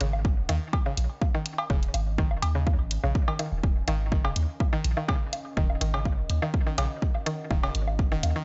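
Quirky and hypnotic, this short cut from a longer minimal techno piece runs at 124 BPM in a straight 4/4, resting on a single Eb minor seventh chord in Eb minor. An overdriven, punchy electronic kick sits up front with studio reverb, joined by bright, overdriven electronic hi-hats and a tape-warm woodblock and cowbell part treated with studio reverb and tape echo. A deep sine sub bass with a pitch-drop attack pumps under sidechain compression, holding the low end between Eb1 and Eb2. Over it, a woody, round mallet-like synth pluck with a ring-modulated FM edge repeats a riff from Db3 to Eb3, colored by chorus, cassette tape grit, tape echo and sidechain pumping. From 0.4 seconds a dark, moody ambient pad fades in, sitting in the background, its slow-attack unison sawtooth and sub octave spread across Db4 to Ab5 through chorus, built-in reverb and pumping. The digital ambience keeps the whole mix rolled off above 7.8 kHz.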